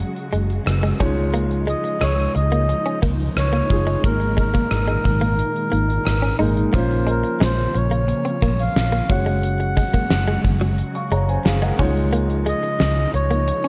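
1980s-style pop at 89 BPM in Db major, glossy and romantic, this excerpt pairs a dark, mellow grand piano and a silky, warbling string machine with ensemble chorus against a gated drum kit whose fat snare and tight kick sit up front alongside a round, punchy muted electric bass. A clean, direct-recorded electric guitar with analog chorus picks a background riff from 0.3 s, and at 1.7 s a reedy accordion takes the melody through tape echo. Chords drift through suspended and add9 colours such as Gbsus2, Dbadd9 and Bbmadd9, all under light reverb in a dark production.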